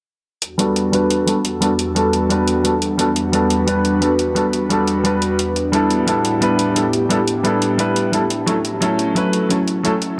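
A straight 4/4 pulse at 175 BPM from a gritty, pitched-up electronic hi-hat drives this melancholic, rolling liquid drum and bass fragment in E dorian, where an intimate, up-front concert grand piano with audible action noise plays accompaniment through a low-pass filter sweep and delay, and an airy, breathy pad with chorus sustains chords moving from Em11 to A9sus4 at 5.9 seconds and F#m7 at 8.5 seconds, set in a lush hall reverb.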